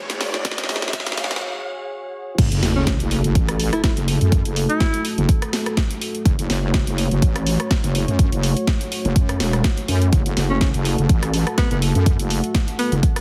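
Opening on a background riser and drum fill over a moody, sidechain-pumped analog pad and a heavy, detuned wobble bass in a filtered build-up, with a punchy up-front kick joining at 0.4 s, this gritty, bouncy bass house cut at 124 BPM in F# minor breaks at 1.4 s, then drops at 2.4 s with a sub-drop impact as the kick and a cracking snare with hi-hat, rim click and crash drive on, and a mellow, subtoned jazz alto saxophone solo with dub echo arrives at 2.8 s, the mix carrying a heavily compressed, radio-like sound with light digital reverb.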